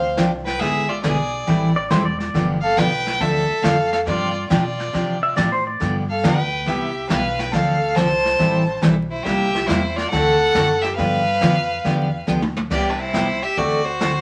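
A clear, focused fiddle carries the melody up front in this swinging, cheerful western swing excerpt, bowed with light vibrato. A second fiddle, more intense and boxy, plays a supporting line beneath it throughout. A full-bodied jumbo acoustic guitar, picked and sitting up front, supplies the accompaniment over jazzy changes such as Am7, Dm7, G7 and Cmaj7. Underneath, a pizzicato upright bass with gut strings gives a woody, thumpy low end. A brushed drum kit in a small room adds dark cymbals and a punchy kick, with a drum fill at 12.3 seconds. Twangy pedal steel, played with fingerpicks and volume swells, appears in brief phrases around 1.8 and 5.2 seconds, and the whole track carries studio reverb and a layer of vinyl crackle.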